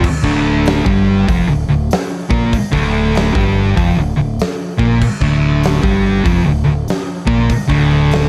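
Two thick, fuzz-distorted electric guitars open on a brooding D minor riff at 96 BPM with swung eighths, one of them sitting up front, alongside a big acoustic rock kit with a punchy kick, fat snare and bright cymbals ringing in a large room, before a growling, overdriven fingered bass joins at 0.2 seconds to deepen this ominous stoner and doom metal passage, cut from a longer piece and given a dark production with light reverb.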